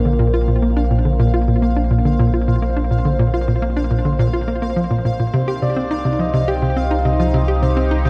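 Ambient, sequencer-driven space music at 105 BPM in straight 4/4, hypnotic and mysterious, where an up-front hollow, bouncy square pluck riff with chorus and delay runs over a deep, round sub bass, a bright, resonant sweeping pad holding sustained chords from Bb6 to Cm, and a faint pulsing gated texture on F5, until a breathy, flute-like lead with vibrato enters at 5.3 seconds, all set in a lush hall reverb with a dark production in this short excerpt cut from a longer piece.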